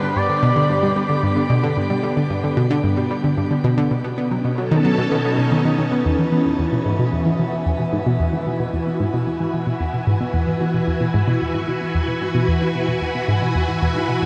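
This is ambient, sequencer-driven space music in 4/4 at 112 BPM, with a straight, luminous and expansive feel, cut from a longer piece. An up-front analog pluck carries the riff in the low register, its round, wave-folded sawtooth tone coated in chorus and tape echo, while a swirling vintage string machine holds sustained chords through an ensemble chorus and phaser. A nasal pulse-width lead sings a brief melody with vibrato and portamento, colored by cassette tape and tape echo, before dropping out at 1.5 s. The harmony moves from G to B7, then shifts to E major with an Eadd9 chord at 6.1 s, where a filter sweep begins on the pluck. From 8.3 s a very quiet, bubbling texture of random, resonant filter steps sits high on E5. The dark, warm production is bathed in a wet shimmer reverb with a long 7.8-second tail.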